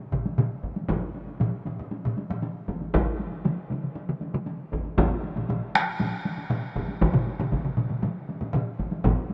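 A taiko ensemble struck with hard sticks sits up front in a live room and opens this driving, ceremonial passage of Japanese traditional drumming, cut from a longer piece. It moves at 118 BPM in a straight 4/4. Beside it, a second up-front taiko group plays with heavy sticks, entering at 0.3 seconds. A third taiko group, also using hard sticks in the live room, joins the ensemble. Another heavy-stick group sounds close and dry in the background. The whole performance unfolds in one continuous section inside a huge ambient space whose reverb rings for a long time, and the front hard-stick group drops out at 8.7 seconds while the others carry on to the close.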